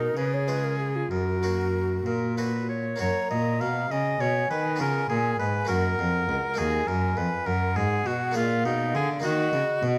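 Baroque-style classical chamber music, this short excerpt from a sonata movement with continuo moves in a serene, flowing 6/8 at about 63-68 BPM in dotted quarters, with a gently rubato feel in F# major. A clear, close-miked oboe carries the melody up front with classical vibrato, while a mellow, hollow concert flute adds an airy second line with soft attacks and its own vibrato. Underneath, a bright Italian-style harpsichord with a single set of plucked strings fills in the accompaniment, and a single bowed cello anchors the bass with a smooth, even tone and light vibrato, sitting prominently in the blend. The harmony moves from C# to F# early on, then through C#7, D#m and A#7 before settling back on D#m near 9.2 seconds, as the oboe drops out at 9.8 seconds. Light reverb and close, detailed microphones give the ensemble an intimate, finely etched sound.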